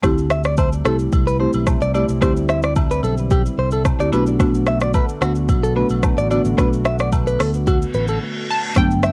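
Romantic and breezy, this afrobeats excerpt moves at 110 BPM in a straight 4/4, drifting from a D9sus4 chord to Bm7 at 4.1 seconds. A buzzing marimba played with medium mallets carries the accompaniment with a woody, close-miked fullness, while a smooth, mellow analog pad holds sustained chords underneath, softened by chorus, cassette tape and plate reverb. Up front, an electronic afro-pop kit with a deep kick, metallic hi-hats, rim clicks and shaker sits beside a round, punchy fingered electric bass, and agogo bells and woodblock add acoustic colour from further back. A bright, clean guitar recorded direct plays a compressed, picked riff from 0.3 seconds, coloured by tape echo. Near the close a reverse cymbal rises into a short break and an impact at 8.8 seconds, as a detuned analog pluck with a fast attack and decaying tone slips in a brief melody, all with the light reverb and hazy character of a home cassette recording.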